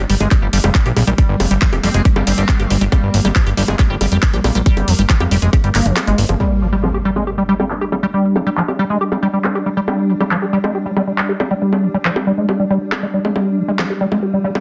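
A squelchy, resonant acid bass riff drives this alien, driving psychedelic trance excerpt at 138 BPM in G phrygian, riding over a fat, detuned analog bass and tight electronic kick that both drop away by 6.4 seconds, when an impact hits and filter sweeps move across the overdriven drum kit of bongos, handclaps, hi-hat and crash, the acid line and a swarming, granular drone in the background, while a metallic FM wobble bass flickers faintly between 1.8 and 2.7 seconds in a dense, heavily limited mix.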